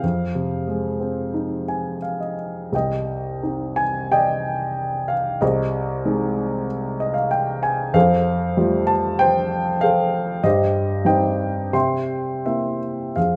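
Rubato phrasing in 4/4, drifting between 81 and 100 BPM, gives this brooding classical piece in C minor a lyrical, unhurried pull, heard here as a 13.4-second portion of a longer work. A single dark grand piano plays solo across a range from C2 to C6, sounding mellow and worn, placed up front and intimate, with audible action noise and brief fills at 1.3 and 6.7 seconds. Its moody harmony moves from Fm7 through Ab/C and Fadd9 to a closing C7, carried by moderate recital hall reverb.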